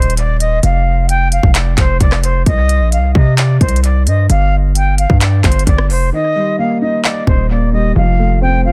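An echo-heavy, reverberant mix frames this melancholic, hard-hitting trap excerpt in a half-time feel, where a distant, airy silver flute carries the melody with vibrato and tongued notes through a low-pass filter and analog delay. Beneath it, a punchy, saturated 808-style bass with a noise layer, a fast attack and a decaying tail sits up front beside an electronic trap kit of hard-clipped kick, crisp hi-hats, handclaps and rim clicks, moving through chords such as Cm, Fsus2 and Eb. At 6.1 seconds the hi-hats drop out for a brief break as a dark, mellow concert grand enters with audible action noise, deep bass and a boxy tone, also filtered and delayed, while the drums stop at 7.4 seconds.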